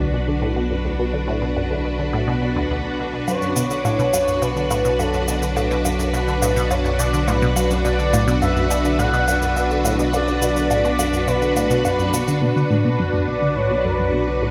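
Ambient, sequencer-driven space music in B minor at 105 BPM, expansive and hypnotic, where a lush, vintage string machine holds sustained Bm chords under ensemble chorus while a squelchy, resonant blip pluck cycles a low riff through phaser and delay, and a deep, round sine sub bass sits on B1. At 3.3 seconds a smooth, expressive synth lead with vibrato enters, carrying a mellow melody through lush chorus and delay, joined by electronic cabasa and woodblock that echo with delay and fall away at 12.4 seconds. The whole cut from a longer piece is bathed in a huge, wet reverb with a 7.9-second tail.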